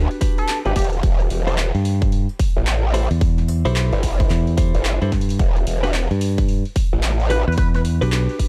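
Swaggering and playful, this glitch hop clip struts along with a swung sixteenth-note feel in 4/4, its dry, dark production moving from Em7 to Emadd11 and back. A punchy electronic kick sits up front, joined by a dubstep drum kit of handclaps, hi-hat and a deep snare; both drum parts are layered, run through overdrive and re-recorded in a small room. Two basses carry the low end: an aggressive, growling, wobbling synth bass thickened with chorus and tube saturation, and a bright, direct fingered electric bass that comes in at 1.7 seconds. A clean electric guitar adds compressed stabs through sidechain pumping and tape echo, while an edgy, tearing sync lead with vibrato appears in two brief bursts, the second at 7.3 seconds. A barely audible downlifter slips by near the start.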